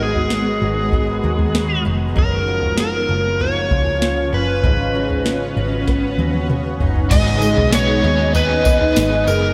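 Dream pop at 97 BPM in G# dorian, ethereal and hazy, with a dark, up-front overdriven slide guitar carrying the melody through tape echo over a shimmering pad with slow attack and long release, treated with chorus and phaser. A fingerpicked twelve-string acoustic guitar, woody and octave-doubled, plays arpeggios, while a round, foam-muted electric bass and a soft vintage rhythm box with a deep kick and crisp snare hold the groove, the drums adding a fill from 5.9 to 7.1 seconds. At 7.1 seconds a bright, double-tracked overdriven electric guitar with tremolo joins in accompaniment, all set in a moderate concert hall reverb across G#m7 and F#maj7 chords.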